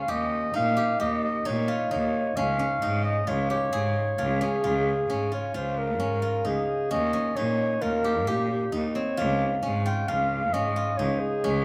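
A smooth, soft-attacked classical clarinet melody opens alongside silvery, ringing arpeggios from a fingerpicked steel-string zither, joined at 0.1 s by a single player's biting, intense bowed cello with vibrato up front, in this playful, hopeful excerpt of contemporary chamber music in 5/4 at 132 BPM in Db lydian, alternating between Eb7 and Db within a moderate recital-hall reverb.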